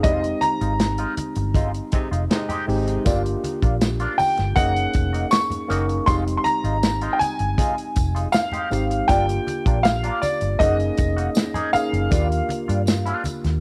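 A clear, present grand piano carries the melody up front, between D5 and Db6, across this smooth, bittersweet excerpt of lush 1970s-style soul, moving at an unhurried 80 BPM in F dorian. Beneath it, a worn, slightly out-of-tune tine electric piano supplies the accompaniment, while a clean semi-hollow electric guitar plays a riff through a wah. A dark, round, foam-muted bass sits up front alongside a tight soul drum kit of hi-hat, kick and medium-tuned snare with a rolled-off top, and low-tuned, thick-skinned congas add very quiet percussion. The band opens on an accent, with a mellow horn section of light vibrato and tape echo hitting stabs from 1.9 to 3.0 seconds, and a jingly, saturated tambourine enters in the background at 3.1 seconds. The harmony circles Fm7, Gm7 and Gb6 before settling on Ebmaj9, and the piano, electric piano, guitar, drums and horns all carry the hazy grain of cassette tape in a lightly reverberant home recording.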